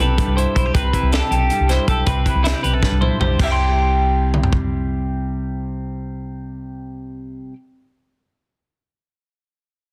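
A wistful, intricate math rock and midwest emo excerpt in 7/8 at 318 BPM in C major opens with two bright, twangy twelve-string electric guitars, one giving spring-reverbed accompaniment and the other picking high arpeggios through analog delay, over a dark, round hollow-body bass, while a crisp fusion kit with a high-tuned snare and tight, softly clipped kick plays from 0.2 s, throws in a fill at 2.8 s as the harmony moves from Cmaj7 to C at 3.4 s, and drops out at 4.6 s, all in a dense, heavily limited mix with light reverb.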